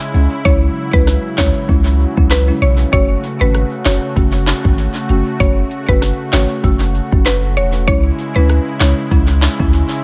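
An echo-heavy digital ambience surrounds this sultry, tough dancehall excerpt in F# minor at 97 BPM, where a punchy sine sub bass with a pitch-drop attack and an up-front electronic afro-pop kit of deep kick, sharp snare, handclaps, rim clicks and metallic hi-hats (muted from 0.5 to 2.9 seconds) with tape echo sit beneath a woody, rustic folk marimba played with soft mallets, a smooth, warbling vintage analog pad with lush chorus and sidechain pumping, and a round, full-bodied FM synth pluck melody with chorus and tape echo, as the chords move from C#m to F#m at 2.9 seconds and return to C#m at 7.9 seconds.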